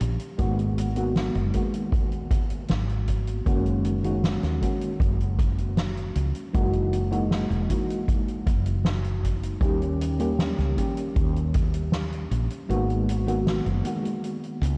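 A mellow FM electric piano sits up front, its soft, round tone warbling with tremolo, subtle chorus and a diffuse ambient delay, with a faint noise layer under each fast-attack, decaying chord. This vaporwave excerpt, cut from a longer piece, moves in a straight 4/4 through lush extended harmonies, G#m9, F#69, F#13 and D#7, before returning to G#m9 at 12.7 s. Beneath it, a woody fretless electric bass plays low and close, dark and hollow-bodied with a direct, amped character. A soft-mallet drum kit supplies hi-hat and a medium-tuned snare, and a boomy acoustic kick enters at 0.4 s and stops at 11.7 s; both the kit and the kick carry a vintage 12-bit sampler grit. Soaked in a moderate church reverb and the haze of cassette tape, the dreamy mix feels nostalgic and faded.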